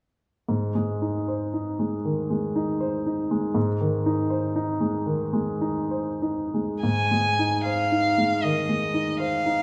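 A polished grand piano opens at 0.5 s on an Ab chord, setting a serene, warm romantic mood in Ab major. The piano carries the accompaniment alone through the opening, its present tone and short sustain spanning Ab2 to C5. The 4/4 pulse moves with a flexible rubato feel, the tempo drifting between 61 and 81 BPM. At 6.8 s a single bowed violin enters with the melody in the range Eb5 to Ab5, its rich, smooth tone shaded with vibrato and sitting up front beside the piano. Both instruments sound within a reverberant recital hall with a 1.7 s decay, and this short passage, cut from a longer piece, closes at 9.6 s.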